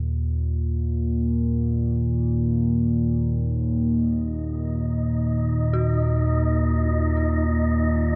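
Unfolding in free time over an E-flat minor chord, this short dark ambient drone fragment feels cavernous and dark, anchored by an up-front analog drone in the low register, a sawtooth and pulse-wave sound with chorus and a filter sweep running across its 8.2 seconds. A breathy, wind-like tuned noise texture carrying built-in reverb drifts in at 4.4 seconds. At 5.7 seconds an eerie, inharmonic FM synth bell begins arpeggios on Gb4 in the background, treated with chorus, tremolo and delay, all within a light digital ambience.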